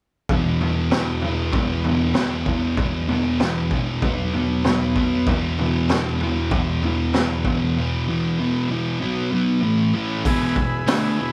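Raw and swaggering, this short garage rock clip in E major moves at a straight 96 BPM in 4/4, driven by an up-front, double-tracked fuzz guitar riff cycling through E5, B5 and A5 power chords over a gritty, saturated drum kit with a boomy kick, a high-tuned snare, hi-hat and toms, until a buzzy vintage combo organ enters at 10.3 s with clean, lightly vibrato-tinged sustained chords as the band lands on E, the whole performance captured live in one room with a moderate large-studio reverb.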